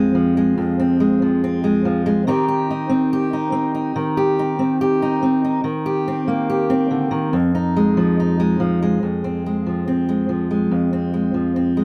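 A fingerpicked steel-string acoustic guitar with warm, fresh strings and an auditorium-body tone plays alone, up front and closely, intimately recorded with little reverb, in this reflective, melancholic folk fragment, moving from Fm through Cm/Eb, Eb6 and Fm7 before settling back on Fm at 9.0 seconds.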